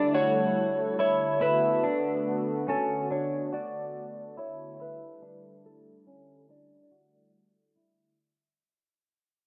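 Dream pop at 71 BPM in 4/4 with a straight feel, this short excerpt cut from a longer piece carries an ethereal, melancholic mood. An electric slide guitar with fingerpicks carries the melody up front, its slightly broken-up, compressed tone softened by a low-pass filter and tape echo before it stops at 7.3 seconds. Beneath it, an electric guitar at the edge of break-up plays picked arpeggios, also up front, bathed in lush chorus, tape echo and a low-pass filter. A hollow, flute-like pad with a nasal, detuned edge and a soft attack holds sustained chords further back, treated with chorus and its own low-pass filter. The harmony moves from A7sus4 to Bm7 and back to A7sus4, while a filter sweep and a fade-out run across the whole passage. Wet studio reverb wraps the rough home demo mix in a short, hazy space.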